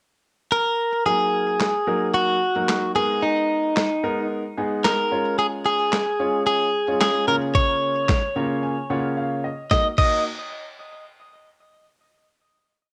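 A bright, clean electric guitar opens at 0.5 s with a picked, motif-based melody coloured by tape echo and plate reverb, joined at 1.1 s by a polished grand piano playing syncopated drop-2 chords with sidechain pumping and at 1.6 s by a gritty, sampler-style soul kit with a thumpy kick and handclaps layered on the snare in a four-on-the-floor beat, giving this bittersweet, driving dance-pop piece at 111 BPM in Eb minor a cassette-home-recording feel as it moves through Ebm, Abmadd9, Db and Bbm/Db, passes through a piano fill and short break, and settles on a closing Ebm chord.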